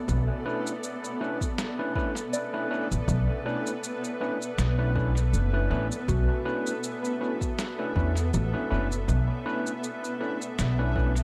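Hazy and meditative, this ambient dub fragment rests on a single Bm11 chord, with a blurred, evolving granular cloud pad holding sustained chords beneath soft FM synth bell arpeggios treated with chorus, phaser and analog delay, while a woody, thumpy pizzicato upright bass sits up front beside gritty stabs from an overdriven tine electric piano through a combo amp, and a muffled, pitched-down electronic cabasa and snare drum with dub echo joins a soft, overdriven electronic kick in the background of an echo-heavy mix with light digital ambience.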